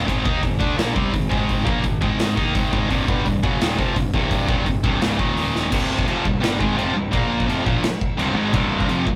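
A rough rehearsal-room recording with tube saturation and light reverb carries this heavy, aggressive heavy metal cut in C minor at 170 BPM, where a bright, double-tracked high-gain guitar riff sits up front over punchy drums with bright cymbals and a fill at 5.5 seconds, a growly fuzz bass rumbles in the background through chords moving from Ab5 to Cm and Bb5, and a crunchy overdriven second guitar joins at 8.5 seconds.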